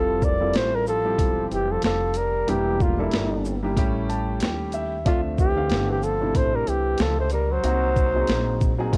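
A breathy flugelhorn carries the melody up front in this short excerpt of relaxed, cool jazz-hop, its mellow tone marked by light vibrato and scooped notes. Beneath it, a growling tenor saxophone sits in the background on a low second line, raspy and subtoned with a soft attack, colored by cassette tape. A dark, intimate concert grand piano accompanies with audible action noise and deep bass, adding a fill from 3.8 to 5.1 seconds, while a woody pizzicato upright bass anchors the low end. The boom bap sampler-style kit enters at 0.2 seconds, compressed and pitched down, with a thumpy kick, high-tuned snare, hi-hat and shaker pushed up front. At 93 BPM in 4/4 with a light swing on the sixteenths, the F major progression moves through Fmaj7, Em7b5, A7, Dm7 and Cm7b5, all set in a small room with the grain of a home cassette recording.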